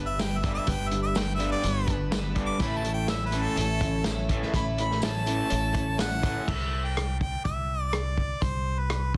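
An open-road, jangly feel drives this folk rock and heartland rock fragment, moving at 124 BPM in a straight 4/4. A picked twelve-string acoustic guitar supplies shimmering, octave-doubled accompaniment, joined by a bright, overdriven garage guitar riff that is double-tracked low in the register, while a very quiet tonewheel organ holds sustained chords with key click and a slow rotary sway. Up front, a clear harmonica carries a punchy solo full of vibrato and scooped notes, over a woody pizzicato upright bass and a lo-fi vintage drum kit with muffled, dark cymbals, a tight kick and rim clicks. A jingly tambourine sits close and dry in the background as the chords move from G to A. By 6.5 seconds the guitars, organ and tambourine have fallen away, leaving harmonica, bass and drums on a C chord until the cut at 9.2 seconds, all within a dense, heavily limited modern master.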